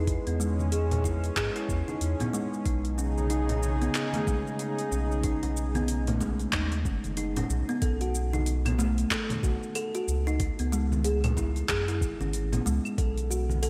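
A round, deep analog bass with a sidechain pump sits up front in this earthy organic downtempo clip cut from a longer piece, joined by woody thumb-plucked kalimba arpeggios through digital delay, a gritty, thumpy electronic kick, a swung deep house kit of claves, handclaps, metallic hi-hat and shaker in gated reverb, and distant congas, while a warbling, detuned vintage pad with chorus, pumping and shimmer reverb and a faint, ringing bronze singing bowl both fall away at 7.8 seconds, all set in a lush hall within a bright 1980s-style digital production.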